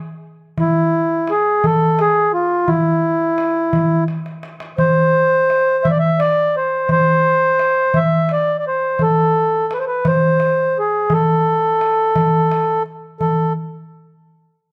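Hypnotic and soulful, this Arabic maqam ensemble fragment in A maqam nahawand (tuned to A4 = 443 Hz) moves in a straight 6/8 at 57 BPM, where a reedy, round, dark accordion carries the melody up front between E4 and E5 from 0.6 to 13.5 seconds while a clay-shell darbuka with natural skin sounds small and distant, as if in a large room, struck with hard hands and breaking into a brief fill at 4.1 seconds, all captured by close, detailed microphones with light reverb.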